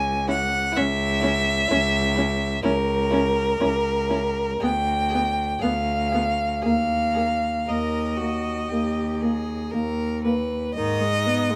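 Light reverb surrounds this string recording, a brief passage cut from a longer piece. It is a slow, romantic classical movement for string quartet, solemn and elegiac in mood, with a gently flexible rubato pulse. The cello anchors the low end with a rich, close bass line, while one violin sits up front with a focused second line that climbs highest of the group. The viola fills in a warm, smooth accompaniment, and the other violin, entering at 0.3 seconds alongside the viola, carries the melody in a clear, even tone set a little further back. Each of the four bowed parts is played by a single player with vibrato, and the harmony moves from C sharp minor through D minor and a bare D sharp fifth before arriving on G sharp minor at 10.7 seconds.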